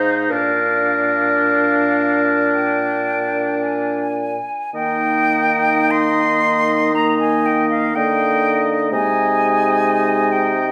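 From the first moment the full wind quintet sounds together: an airy silver flute sings the melody up front with vibrato and a soft attack, a clear, distant oboe carries a second line, a vintage-toned French horn and a background clarinet supply accompaniment, and an up-front bassoon holds the mellow bass. This lyrical, serene slow romantic movement flows with rubato in 4/4, its harmony moving from Bb to Eb as a new section begins at 4.7 s, then to Ab/C at 8.9 s. A reverberant recital hall surrounds the players, and the passage is cut from a longer piece.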